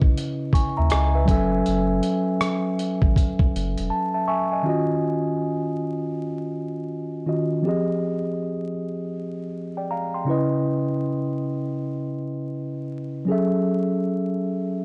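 Vinyl crackle and light digital ambience frame this hazy, melancholic lo-fi hip hop fragment, where a gritty, compressed, tape-warm sampler-style drum kit with a thumpy kick, hi-hat and rim click sits up front beside a deep, round dub sub bass, both dropping out at 3.9 s as a mellow, clean tine electric piano plays a fill and then carries the swung minor-ninth chords alone until 14.8 s.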